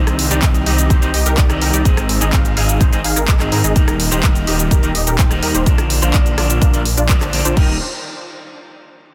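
A dense, heavily limited master with little reverb carries this triumphant, anthemic slice of festival progressive house, cut from a longer piece and moving through Cm, Ab, Eb and Bb. An overdriven house kit with bright hats, cabasa, handclaps, rim clicks and crash comes in at 0.1 seconds, and a punchy, tape-warm electronic kick joins up front from 0.4 seconds, while a thick, lush detuned saw bass with chorus and saturation pumps under the sidechain. A detuned supersaw stab carries the riff through a filter sweep, with subtle chorus and digital delay, over a dark, slightly broken-up picked electric guitar that pumps and echoes as accompaniment.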